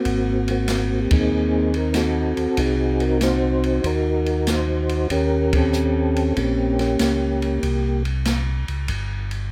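Swinging and bluesy, this short soul jazz organ trio excerpt moves at 95 BPM in 4/4 with a firm swing on the eighth notes. A soft, flute-like tonewheel organ carries the melody up front, its clean, percussive attack colored by second harmonic percussion, chorus vibrato and a slow rotary speaker, and it plays until 8.0 seconds. Beneath it, a second tonewheel organ handles the bass line in a round, dark register, lightly overdriven and also turning through chorus vibrato and slow rotary speaker. An acoustic jazz kit in a natural studio room fills out the groove with hi-hat, ride, snare and a boomy kick, its cymbals dark and its snare medium-tuned. The band hits accents together at 1.0 and 5.4 seconds while the harmony moves from Ab9 to Eb6 and then C5, all set in light reverb.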